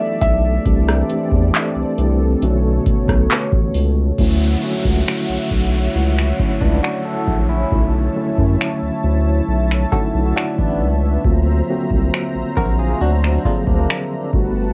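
A booming analog drum machine sets a slow, straight 68 BPM groove in 4/4, its deep kick, metallic hats, finger snaps, handclaps, rim clicks and crash cymbal sitting up front beside a thick, saturated sub bass. This excerpt of longing, moody contemporary R&B rests on a mellow tine electric piano heard through built-in speakers and a smooth, detuned sawtooth pad with chorus, moving through lush chords from Em11 to D7alt, while an intimate grand piano with audible action noise and analog delay states a brief melody that ends at 1.9 s. An electronic downlifter enters at 4.2 s, and a bright, twangy, direct-recorded clean electric guitar joins at 6.6 s with picked arpeggios through tremolo and analog delay, all captured as a home cassette recording with light reverb.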